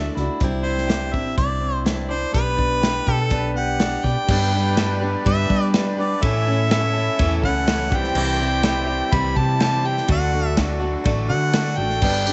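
In a straight 4/4, this jangly, hopeful snippet of folk and heartland rock rides on an airy, polished country drum kit with a punchy kick, a dark, round hollow-body bass, bright dreadnought acoustic guitar picking in the background, and a slightly broken-up, lo-fi electric guitar riff over chords moving from Cadd9 through G, A, C and D. Up front, a clear harmonica carries the melody with light vibrato and scooped notes, while a twangy pedal steel slips in briefly at 3.1 seconds. A reedy, sweet accordion holds sustained chords from 4.3 seconds, and a jingly tambourine appears only at 12.1 seconds, all in light studio reverb.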